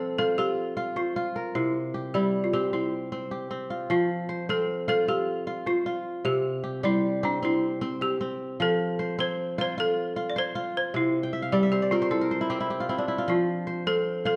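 Opening together, an up-front, crisp, fingerpicked kora spins ringing arpeggios while a woody, round balafon played with hard rubber mallets carries the dry, boxy melody, the two set in generous recital hall reverb in this flowing, warm West African traditional music in 12/8, with the kora breaking into a fill from 11.2 to 13.3 seconds.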